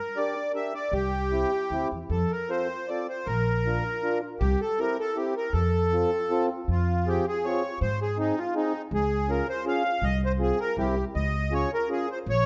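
Swaying in a rubato three-beat metre, this jolly, bouncy alpine folk dance is cut from a longer piece. A sweet, reedy accordion with light tremolo tuning carries the melody up front from 0.0 s, its tone smooth with a dark edge. A second, mellow accordion with a round single-reed, tone-chamber voice supplies accompaniment just beneath it. From 0.9 s a woody, growly upright bass with steel strings plays pizzicato, sitting up front alongside the lead. At 6.7 s a second section begins, with the key shifting from F major to F minor, and the whole band sits in the wet reverb of a recital hall.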